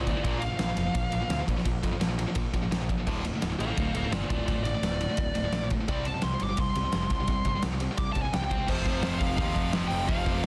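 A dark, up-front high-gain lead guitar solos over two bright distorted rhythm guitars and a growling, overdriven picked bass in this heavy, epic metal excerpt at 171 BPM in 4/4, the lead pausing briefly before returning at 3.6 seconds. A big rock drum kit with a fat snare and punchy kick drives the riffs through Bb5, Dm and C5 in a dense, heavily limited mix with light reverb. At 8.7 seconds a double-tracked, scooped high-gain guitar joins as the music lands on F.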